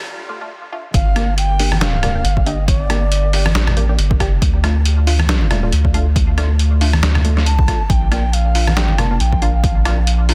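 Heavy and cavernous, this deep dubstep excerpt in G minor moves at 138 BPM with a half-time, swung feel. A reedy, airy shakuhachi opens the piece with close-miked chiff and vibrato, its melody soaked in dub echo, and returns from 7.5 to 10.1 seconds. A muted, dark chord stab built on a filtered sawtooth pluck enters at 0.3 seconds, colored by phaser, cassette tape grit and dub echo as the harmony moves from D minor to G minor, back to D minor and on to B-flat. The drop lands at 0.9 seconds, bringing in a round, up-front sub bass, a punchy, overdriven layered kick, and a gritty, pitched-down sampler kit of hi-hat, rim click and a medium-tuned snare with a small-room character. Bright, saturated congas played with soft hands sit in the background, and the whole mix has a dense, heavily limited modern master in a digital ambience.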